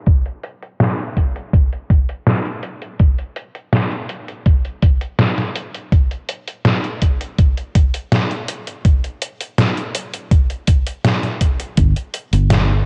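A straight 4/4 pulse at 82 BPM opens this nostalgic, woozy vaporwave fragment, with a thumpy, tape-warm electronic kick and a detuned 8-bit drum machine supplying hi-hat and a medium-tuned snare soaked in gated reverb, all treated with a filter sweep and sounding close in a small room. At 11.8 seconds a dark, round fingered electric bass enters on a low G with tube saturation, marking a brief new section; the kick drops away a moment later at 11.9 seconds, and the drum machine stops at 12.7 seconds. The whole piece has the hazy, muffled feel of cassette tape, with a low-pass filter and light reverb.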